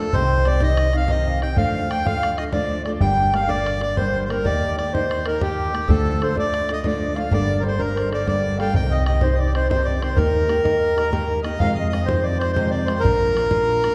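Set in a reverberant hall, this dark, spirited Celtic slip jig in 9/8 features a close, up-front, reedy accordion carrying the melody, while a pure, crisp baroque flute traces a second line in the background, all over a boxy, woody fingerpicked old acoustic guitar, a dark pizzicato upright bass and a damped, tight bodhran, with a new section and harmonic shift arriving at 8.7 seconds.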